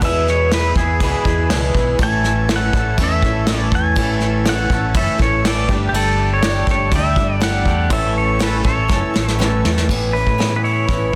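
A dense, heavily limited modern master with studio reverb frames this warm, nostalgic folk rock and heartland rock excerpt in A major, moving at 122 BPM in a straight 4/4 as the chords pass from E through A and Gsus2 before landing on Aadd9 around 9.9 seconds. A bright, twangy pedal steel guitar carries the melody with fingerpicks, slide and volume swells over a boxy, picked ladder-braced acoustic guitar with audible finger squeak, a clean twangy electric guitar riff tucked in the background with ensemble chorus, and a very quiet, reedy accordion holding sustained chords. Underneath, a dark, round hollow-body bass and an up-front brush kit with dark cymbals and a punchy kick anchor the groove, with a drum fill from 8.9 to 9.9 seconds leading into the new section.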